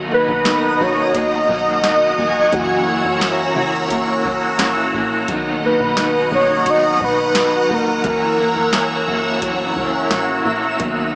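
Dream pop at 87 BPM in B major, dreamy and ethereal, this brief cut from a longer piece sways between Bmaj7 and F#7 under a lush hall reverb with a small-speaker tint. A velvety, detuned synth lead with vibrato sits up front carrying the melody from 0.1 to 9.4 seconds, over a woody, octave-doubled fingerpicked twelve-string playing arpeggios, a swirling phased string machine holding bright chords, and a double-tracked overdriven garage guitar with tremolo in the background. A twinkling granular shimmer, a plucky, funky analog bass low in the mix, and a soft vintage rhythm box with deep kick, crisp snare and metallic hats fill out the sound.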